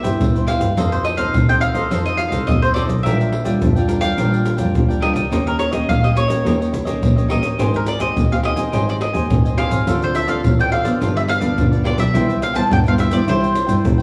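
Worn, warbling cassette tape with wavering pitch drift colors this lively, sunny samba and choro passage, set in a wet, large studio reverb alongside a small room ambience. At 106 BPM in a straight 4/4, an up-front picked mandolin with round double strings and a slapback echo carries the melody, while a mellow, crisp cavaquinho and a warm, fingerpicked classical nylon-string guitar fill in the harmony over a clear, focused bowed double bass with vibrato and a smooth top. Compressed, saturated percussion of egg shaker, tight surdo and pandeiro sits up front as the chords move from Cmaj7 through F7, Bb6, Eb7 and Abmaj7, then turn through Dm7 and G7 back to Cmaj7 at 12.1 seconds.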